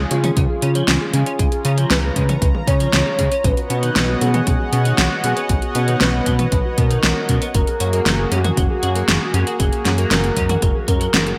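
A dusky synth pad, a soft round pluck and a chorused synth bass open this nocturnal, cinematic synthwave excerpt together, the pad holding dark, detuned sustained chords that pump against the beat while the pluck ripples through gritty, sampler-tinged arpeggios in the background. Moments later an expressive synth lead takes up the melody with a smooth, vibrato-laced sawtooth tone, and a clean, twangy electric guitar adds a picked riff from further back, both carrying chorus and digital delay. The pop drum kit sits up front with a fat snare, metallic hats and toms bathed in gated reverb, and an electronic kick joins at 0.4 seconds with a punchy, tape-warm thump. Underneath, the glossy pulse-and-sawtooth bass stays mellow and sustained, and the harmony moves from Db to Badd9 at 3.4 seconds and Gbadd9 at 7.5 seconds. The whole mix has a bright 1980s-style digital sheen with a moderate plate reverb.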